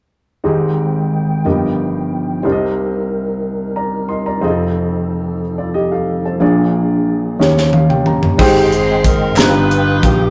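A rough rehearsal-room recording with warm saturation and moderate studio reverb opens this brief, uplifting and reverent slow gospel excerpt in 6/8 at 61 BPM, where an up-front baby grand piano with short sustain plays accompaniment over a soft, flute-like tonewheel organ holding sustained chords through a fast rotary speaker and chorus vibrato, with audible key click. Chords move from Abmaj7 through G7alt, Cm7, F7 and Bb7 to Eb7, and at 7.4 seconds the piano and a crisp, airy fusion drum kit with a high-tuned snare and punchy kick play fills. At 8.4 seconds a distant, roomy saxophone section with vibrato takes the melody in jazz style over a growly, punchy fingered electric bass, while a very quiet, close and dry group handclap sounds briefly at 9.4 seconds.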